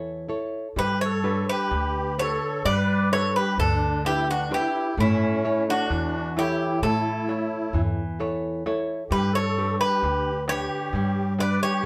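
Tender and warm, this Greek folk piece comes from a bouzouki band playing live together in one room, cut from a longer piece. It moves in a straight 9/8 at 130 BPM, counted in eighths, and it gradually speeds up throughout. Up-front fingerpicked nylon-string guitar, small in tone, and a woody, growly pizzicato upright bass open the recording. At 0.8 seconds the rest of the band enters. The metallic, picked Greek bouzouki carries the melody on double strings, some of them octave-doubled, and sits up front, while a reedy, shimmering musette accordion adds a second line, and a crisp, deep metal-shell darbuka played with hard hands sits very quietly and close underneath. The harmony moves between A and G, and a wet studio reverb gives the room a short, lively bloom.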